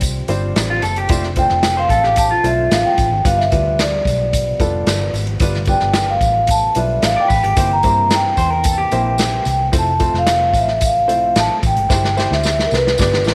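Uplifting and danceable, this 1960s-style soul excerpt sets a mellow, ringing soft-mallet vibraphone melody up front over a punchy big-band drum kit, a round, foam-muted electric bass, woody upright piano accompaniment, a very quiet, lightly overdriven tonewheel organ holding sustained chords and a jingly tambourine in the background, while a dark, slightly broken-up electric guitar riff appears at 0.7 and again at 7.2 seconds before a drum fill closes things out from 11.9 seconds.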